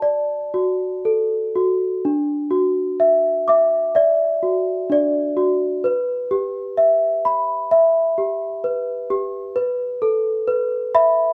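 Gentle and sleepy, this short lullaby excerpt from a children's piece features a solo celesta, bell-like and delicate with an airy, up-front presence, drifting in a rubato 4/4 at 64 BPM in D major across a range from D4 to D6, its chords moving from D through Dadd9 at 2.0 seconds and Em at 5.9 seconds to Asus2, all captured by close, detailed microphones in light reverb.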